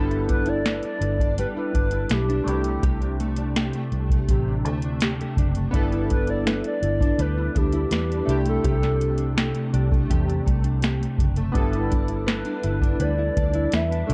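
A hazy, dreamy indie bedroom-pop excerpt where a hollow, woody clarinet-like synth lead carries the melody over an up-front, full-bodied nylon-string guitar with warbly pitch drift, glossy chorused retro synth keys with phaser and cassette-tape coloring, a round, foam-muted vintage electric bass, and a soft vintage rhythm box with a deep kick, crisp snare and metallic hats, all cycling between G6 and C69 chords in a dry, tape-worn mix.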